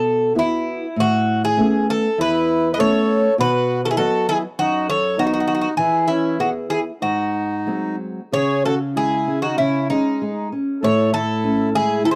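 A bright, metallic Greek bouzouki carries the melody from the first moment, its picked double strings, some doubled at the octave, sitting up front beside a small, warm nylon-string guitar that is fingerpicked in accompaniment. This is a mournful, passionate fado-style ballad in 4/4 at around 98 BPM, played with a rubato feel that lets the phrasing breathe. At 2.2 seconds a reedy, dark accordion enters with a smooth second line. The music begins in E major, then turns to C# minor at 8.3 seconds, deepening the sorrowful mood. The sound is dry and close, with a small room reverb giving it the intimacy of a 1970s-style studio recording, and the passage is cut from a longer piece.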